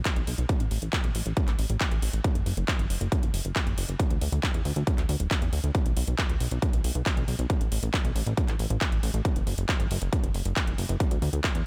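A punchy, tape-warm electronic kick drives this euphoric uplifting trance cut at 137 BPM in 4/4, sitting up front beside a mellow, plucky analog bass that ranges from D1 to E2 with sidechain pumping, while a big-room dance drum kit adds handclaps and metallic hi-hats that pump under sidechain, all in a dry mix with little reverb.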